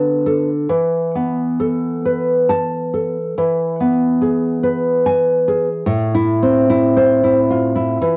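Wistful and passionate, this brief fragment of a romantic piece for solo classical guitar unfolds with a flexible, rubato feel in 4/4. A single nylon-string guitar carries everything, fingerpicked and placed up front, with a full-bodied, deep classical tone and audible finger squeaks that bring the player close. Its sound passes through cassette tape, and the home recording sits in a light studio reverb. The harmony moves from Bm7/D to a lingering Esus4 that settles onto E at 3.4 seconds, evoking a sense of longing. At 5.9 seconds a new section begins as the music arrives on A minor, and the clip breaks off shortly afterward, plainly cut from a longer work.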